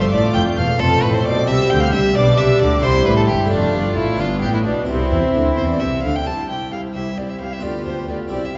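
Heard from further back in a reverberant scoring stage with a softened top end, this stormy, driving baroque-style concerto movement in C major moves at 88 BPM in 6/8, with a rich, reedy solo violin up front carrying the melody over period-style gut-string sections: one background violin section also playing a melody higher up and another holding a second line, a dark, distant viola section, a brilliant plucked harpsichord in the background, and a cello section and double bass section on the bass line until the basses drop out at 6.1 s, all in a passage cut from a longer piece.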